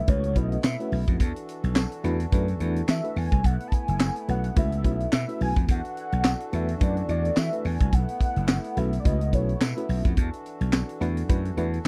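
A tight, up-front funk kit with a high-tuned snare, tight kick, hi-hat and handclaps drives this slick, late-night early-eighties boogie funk excerpt, joined by a growly, bright slap bass and a jingly tambourine sitting in the background from 0.6 s. A velvety, detuned synth lead with chorus and vibrato carries the melody until 10.1 s, over a phaser-treated FM electric piano with warbling tremolo and a reedy, breathing pedal harmonium holding sustained chords. The changes alternate between B9sus4 and E9sus4 in a swung sixteenth feel, and the dry, close recording keeps every part present and intimate.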